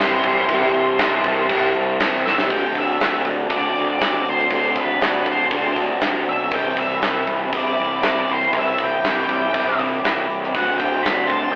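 Wistful, hazy shoegaze and dream pop cut from a longer rock piece at 119 BPM, where a distorted octave-fuzz lead guitar carries the melody over a smooth, chorused analog pad in the background, an up-front overdriven semi-hollow guitar riff, a round fuzz bass and a gated 80s drum kit with a tight kick and a fill at 2.3 seconds, while a very quiet, dark clean electric guitar plays its riff only until 2.5 seconds and returns at 10.6 seconds, all in a rough rehearsal-room recording with warm saturation, a telephone-like sound and wet reverb as the chords move from Cmaj7 to D5, back to Cmaj7 and on to D7sus4.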